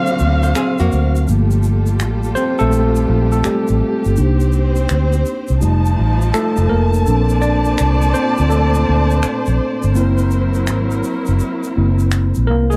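Swung sixteenths at 83 BPM in 4/4 give this short R&B and neo-soul excerpt a loose, soulful sway, and the production overall is dark with light reverb. A worn, slightly out-of-tune tine electric piano carries the solo across the whole passage, lightly overdriven through its built-in speakers and bathed in plate reverb, moving through chords from D7alt and Gm9 to Cm7, F7, Bbmaj9 and a closing Gb7#11. Alongside it, a studio string section holds sustained, bowed chords with vibrato, portamento and a smooth top, set in the same plate reverb. A vintage foam-muted fingered electric bass sits up front with a round, amped tone, entering at 0.2 seconds, while a tube shaker, group handclaps and finger snaps add a soft small-room pulse from 0.1 seconds. A clean, picked hollow-body archtop guitar, miked and amplified, offers a brief hollow second line only between 0.4 and 1.3 seconds.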